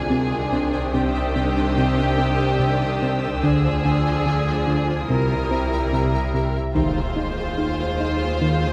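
Captured with close, detailed microphones and light reverb, this eerie, ominous cinematic fragment at 72 BPM sets a lush violin section melody over background violas, distant cellos and woody double basses, all bowed with vibrato, while a clear, faint violin texture hovers high above until 6.3 seconds. A fat, saturated analog bass riff with a detuned sawtooth edge stands out at the front. Around it sit a deep, rumbling drone and a pulsing, tempo-synced gated texture of sustained chords with chorus. At 6.8 seconds the harmony moves to Fm/Eb as a second violin line joins on a single F4 and a huge, dark impact sounds in the background.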